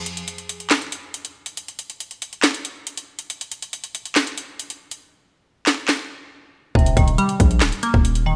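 Triumphant yet wistful, this half-time trap excerpt opens on a break where the drum kit plays alone, its hard-clipped kick, sharp snare, handclaps and metallic hats sitting up front with a vintage 12-bit sampler grit, and the hi-hats drop out from 5.0 to 6.8 seconds. At 6.8 seconds a punchy, heavy 808-style bass arrives with a glassy, crystalline wavetable pluck carrying chorus over an Eb6 chord. The dry mix keeps every hit close and immediate.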